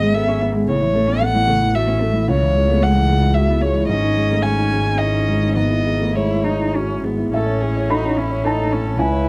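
A woody, up-front solo violin carries a melancholic, longing melody with vibrato over a soft-attack cello second line played sul tasto, a felt-muted upright piano's boxy, mellow accompaniment and a close, airy-bowed double bass, in this dark neoclassical fragment in C# minor and rubato 3/4 at roughly 100-114 BPM, set in light reverb and shifting to a new section at 7.3 seconds.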